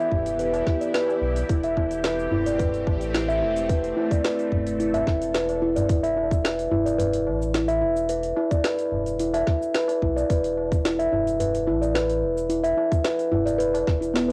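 Organic downtempo with a hypnotic, earthy mood, led by a round, ringing steel tongue drum played with rubber mallets in meditative arpeggios up front, over a tight, tape-warmed electronic kick, an overdriven afro-pop kit with a woody snare and metallic hats, low-tuned tabla in the background, and a deep sine sub bass pumping under sidechain, while a tense, detuned string-like drone with phaser and vibrato holds sustained chords until 5.9 seconds, all carrying a cassette home-recording grain in this excerpt cut from a longer piece.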